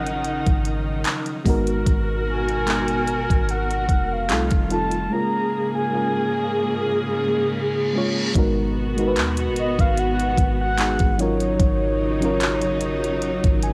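A lightly swung sixteenth-note groove from an up-front, knocking R&B drum kit of kick, hi-hat and handclaps anchors this moody, longing contemporary R&B excerpt, with a soft, round 808-style bass underneath. A horn-like synth lead with vibrato and a filter sweep carries the melody over a warbling, vintage FM electric piano, both chorused, while a lush, bowed string section holds sustained chords with sidechain pumping, and the lead, piano, strings and drums share a cassette-tape tint in a dry, homespun recording. A reverse cymbal from 7.1 seconds leads into an impact at 8.4 seconds as the second section begins, and the electric piano closes with a brief fill at 13.2 seconds.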